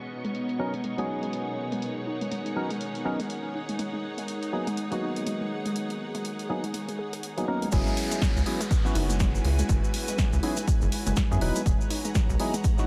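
A light reverb and a low-pass filter give this moody, deep house excerpt a softened, hazy sound, with a swung groove and rich extended chords. A dark, full-bodied pad holds sustained chords in the background while a smooth, bowed studio string section adds texture, joined by a shimmering vintage string machine on violins, and all three pulse with sidechain pumping. A warbling, lo-fi pluck plays arpeggios through chorus and tape echo while a filter sweep moves across it, and a hollow, percussive organ stab adds decaying stabs over a tape-warm house kit of crash, hi-hat and punchy snare. At 7.7 seconds the string machine drops out and the drop arrives: a punchy electronic kick and a rubbery, nasal square bass sit up front, a grainy tube shaker fills in the top, and a downlifter sweeps down through the new section.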